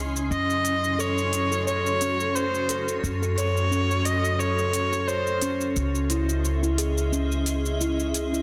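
Organic downtempo with a meditative, hypnotic pull, heard here as a short cut from a longer piece. A cloudy, granular pad holds sustained chords under a woody pizzicato upright bass that sits up front. The steel tongue drum traces round, ringing arpeggios with soft mallets through a digital delay. A clear, focused kamancheh carries the bowed melody with vibrato and portamento from 0.3 to 5.6 seconds, its tape echo trailing behind. Crisp, overdriven electronic shaker and hi-hat give a gently swung pulse, and a breathy, wind-like tuned noise texture drifts in the background. The harmony moves from F#m to C#madd9 at 5.8 seconds, all set in a moderate echo chamber and a dense, heavily limited modern master.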